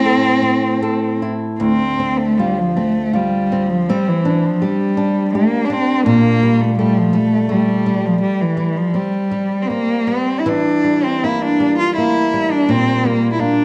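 Celtic slow air in D minor, this short excerpt moves at 81 BPM in 3/4 with uneven, rubato beats that give it a longing, mournful air. A single bowed cello carries the melody from start to finish, sitting close and up front with a soft attack, vibrato and expressive portamento, its tone touched by a slapback echo. Beneath it, a fingerpicked acoustic flamenco guitar plays the accompaniment across its full span, ranging from low bass notes up into its higher register. After a brief opening on Am, the harmony drifts through Dm7, Csus2 and Gmadd9/Bb before darkening toward Edim and settling on Gm/Bb at 12.7 seconds. The production is dark and warm, with a moderate recital hall reverb lending the duo a gentle sense of space.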